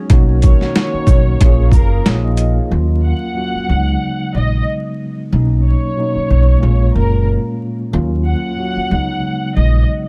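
Swung sixteenths at 92 BPM drive this moody, tough boom-bap hip-hop fragment in Eb minor, where gritty, overdriven sampler drums with a thumpy kick play until 2.5 s and a hollow, airy pad with chorus holds chords until 2.7 s, while a woody, dark pizzicato upright bass sits up front beneath a mellow tine electric piano with cassette-tape colour and a lush bowed violin section with smooth vibrato carrying the melody over major-ninth and suspended chords, with vinyl crackle across a dry mix.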